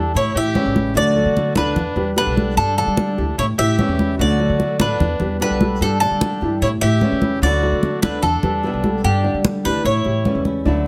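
With a moderate studio reverb, this danceable Cuban son and guajira excerpt at 148 BPM puts a metallic, double-strung tres melody up front over a woody, thumpy pizzicato upright bass, joined by a punchy trumpet second line, dark, boxy baby grand piano arpeggios with audible action noise, a fingerpicked flamenco guitar in the background, and close, damped congas entering at 0.2 s, over a repeating A7, Dadd9, Em7 and Gsus2 progression.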